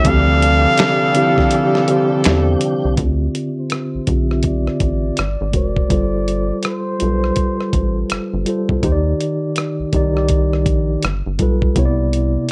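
R&B with a neo-soul lean, this introspective, soulful passage moves at an unhurried 82 BPM in D dorian, its 16ths swung lightly over a dusty, compressed sampler-style kit whose thumpy kick, medium-tuned snare, hi-hat, rim click and finger snaps sit up front. A rubbery, hollow square bass with a dark, resonant filter pluck runs from 0.1 s nearly to the close, while a mellow tine electric piano, clean and heard through its built-in speakers, carries the accompaniment throughout. A muted trumpet with a nasal, breathy tone and jazz-style vibrato takes the solo melody through a plate reverb until 8.1 s, and for the opening seconds a full tonewheel organ with key click and fast rotary speaker holds sustained chords beside short, edgy saxophone section stabs. A break arrives at 1.5 s, and from 3.0 s a filter sweep colours the longer second section as the harmony drifts from Dm11 through G#9 and Ebmaj7 toward a closing Cmaj9. 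Light reverb gently surrounds the whole, and the passage is cut from a longer piece.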